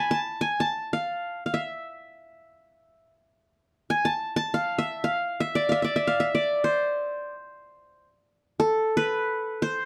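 A solo acoustic qanun opens this short excerpt and carries it through all 9.9 seconds, its triple strings plucked with fingerpicks in free time in A maqam nahawand, moving between A4 and B5. The mood is longing and melancholic, and the instrument sits up front with a bright-edged tone set against a dark, warm production and light reverb.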